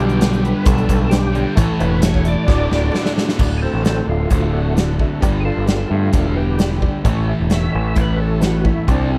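A driving, confident classic rock excerpt in D mixolydian at 131 BPM opens with a gritty, overdriven tonewheel organ carrying the melody through chorus vibrato, slow rotary speaker and slapback echo, over a jangly, detuned honky-tonk upright piano, a crunchy double-tracked guitar riff with spring reverb, a sludgy distorted second guitar in the background and a growling, up-front picked bass. A polished, gated 80s drum kit with bright cymbals and a tight kick joins at 0.1 seconds and, after the harmony moves from G/B through A, plays a fill as it lands on D, after which the sludgy guitar drops out at 3.4 seconds. The organ then takes a thick, key-clicking solo over D, G and A to the close, all set in a light reverb.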